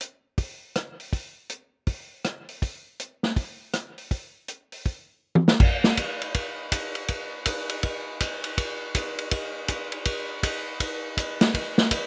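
Jazz drum feature at 161 BPM in 4/4, swinging on the eighth notes with an energetic drive, cut from a longer piece. A vintage acoustic kit sits up front and plays throughout: dark cymbals on ride, hi-hat and crash, a medium-tuned snare with rim clicks, a punchy kick and toms, all with a natural, rolled-off top. The sound is dry, and a drum fill at 5.2 seconds leads into a new section at 5.6 seconds.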